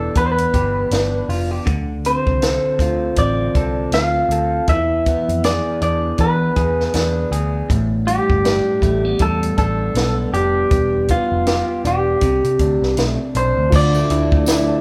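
Mellow and wistful, this swung bedroom-pop excerpt drifts along at 80 BPM in D dorian, with a slightly broken-up electric guitar carrying the melody up front over a second guitar whose compressed accompaniment wobbles with a warbly pitch drift. A round, foam-muted electric bass and a dry compact cocktail kit with a high-tuned snare and dark cymbals hold the groove in a roomy live-band sound. At 13.7 seconds a worn, slightly out-of-tune tine electric piano and a jingly tambourine slip in behind, joined at 14.1 seconds by a nostalgic, lo-fi tape-like pad with chorus as the chords settle on Dmadd9.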